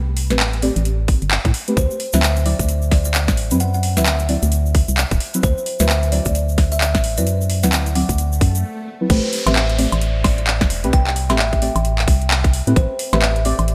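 Late-night and skippy, this two-step UK garage cut at 131 BPM in A dorian, swung on the sixteenths, rides a hollow, dark organ-like FM bass up front beside a garage kit of woody snare, metallic hats, handclaps, woodblock and crash with a tight, layered electronic kick, while deep, soft chord stabs moving from Am9 to D13 drift through chorus and phaser, a ringing thumb-plucked kalimba with delay and a grainy egg shaker enter at 1.8 seconds, and a swell and downlifter carry a brief break at 8.6 seconds into the drop at 9.1 seconds, framed by a bright 1980s-style digital sheen and light reverb.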